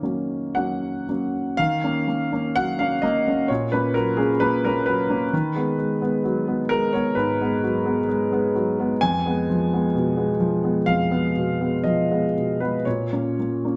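Neoclassical minimalist piano in Eb minor at a rubato 64 BPM, this melancholic, reflective fragment features a solo concert grand, intimate and up front with deep bass and audible action noise, ringing in a wet stone room through a dark, warm production as the harmony moves from Ebm7 through Abm7/Eb and Fdim to settle on Bbm at 12.8 seconds.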